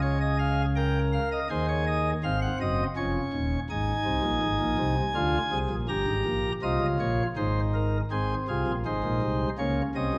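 A pipe organ with sparkling, chiffy flute stops plays alone and up front, spanning Eb1 to Bb5 in a serious, driving baroque-style four-part fugue at 81 BPM in 3/4. The harmony moves from Db through Eb7/Db, Ab7/Eb and Bb7/D to Ab before a new passage at 8.1 s closes on Bbmadd9. A concert hall's wet reverb and a dark production frame this brief excerpt cut from a longer piece.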